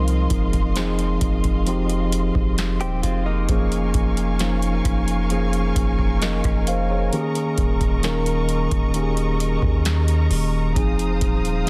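The sound is dry and dense, with a heavily limited modern master that keeps this short section of a longer contemporary R&B piece pressed close to the listener. The mood is sensual and moody, set by a mellow tine electric piano that sits up front and comps through the whole passage with a clean tone that seems to come through its built-in speakers. Beneath it, a long, sine-like 808-style bass sustains deep notes with a fast attack and a decaying tail. A booming analog drum machine joins at 0.1 seconds, pairing a deep kick with a crisp snare, rim click and metallic hi-hats in a tape-warmed, up-front sound. A muted studio string section plays con sordino, holding dark, veiled chords with vibrato, soft attacks and a lush ensemble sheen. Between 2.8 and 4.6 seconds, a direct-recorded clean electric guitar adds brief picked arpeggios with a compressed, scooped tone and tape echo. Across the passage, the harmony moves from Fm7 through Bbm7/F and Eb7sus4 before returning to Fm7.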